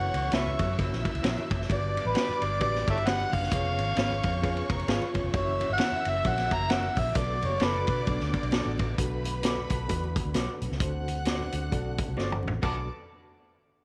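A swung 132 BPM groove in 4/4 drives this passionate, urgent stretch of 1960s-style soul in B minor, anchored by a punchy, up-front vintage drum kit with dark cymbals and a round, foam-muted fingered bass, while very quiet, low-tuned congas add a bright edge. A gritty, overdriven harmonica with vibrato and tongue slaps leads the melody until 8.1 seconds, joined by a lush bowed violin section playing a second line, over a reedy, worn electric piano with fast tremolo, a very quiet tonewheel organ with key click and slow rotary, and two lo-fi, slightly broken-up electric guitars, one playing a fingered riff and the other picked stabs with lush chorus. Light small-room reverb surrounds the band, and a drum fill at 12.2 seconds leads into a return to Bm7.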